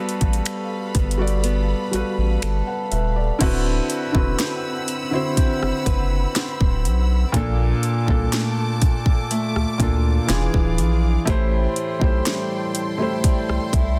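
A muted, mellow felt piano opens this late-night, longing contemporary R&B excerpt alongside a lush, woody bowed string section and a bright, boxy fingerpicked archtop guitar whose arpeggios carry a digital delay and audible finger squeak. A trap kit with a hard-clipped kick, sharp snare, metallic hats and finger snaps sits up front with a deep, saturated sine sub bass, though the kick drops out from 1.4 to 3.4 seconds before the harmony moves through richer chords such as D13 and E7b9. Studio reverb surrounds the parts, and the master is dense and heavily limited.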